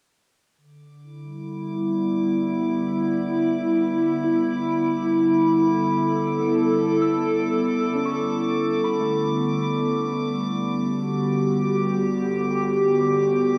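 Luminous and weightless, this ambient piece drifts at 58 BPM in a straight 4/4, resting on A mixolydian and a single A9sus4 chord, as part of a longer work. A warbly, tape-like pad carries the sustained chords from 0.6 seconds, sitting up front with a nostalgic, lo-fi character: detuned square and triangle tones tinged by ring modulation, slow to bloom and long to release, soaked in chorus, cassette wear and shimmer reverb. At 1.3 seconds a glassy harmonics texture fades in high above, its sine-based overtones drifting calmly with a slow attack and long tails. From 4.2 seconds, muted, felt-like synth keys in the background fade in with soft, intimate arpeggios, their quick-decaying triangle and sawtooth tones edged with a noise layer and echoed by analog delay. The whole passage has the hazy intimacy of a home cassette recording in a small, reverberant room.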